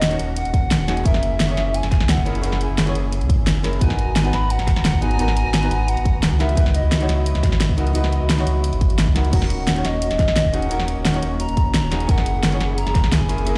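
A punchy electronic kick drives a straight liquid drum and bass groove from 0.5 seconds, layered with a fat, up-front pop kit snare, hi-hat and crash, while a deep sine-like sub bass with an octave sits heavy beneath. A clean, hollow-body archtop guitar with delay plays dark accompaniment, and a woody, bowed string section pumps softly in the background on lush sustained chords. Over this soulful bed, a mellow clarinet-like synth lead with chorus, delay and vibrato carries the melody, pausing at 7.1 seconds before returning at 9.3, all heard in a stony room.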